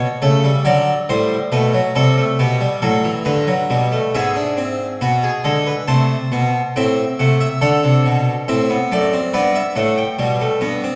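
This is a lively, joyful baroque-style classical fugue in four voices for solo harpsichord, heard in a short passage cut from a longer piece. It moves at 70 BPM in a straight 4/4 in G major, with the voices spanning F#2 to A5. The Flemish-style instrument, with two sets of strings, has a full, plucked voice, close-miked and up front, set within a scoring stage reverb. The opening section passes through A7/C# and D7 before settling on G. At 4.1 s a second section begins, moving through E7/G#, Am and D7 and returning to G by the close at 11.0 s.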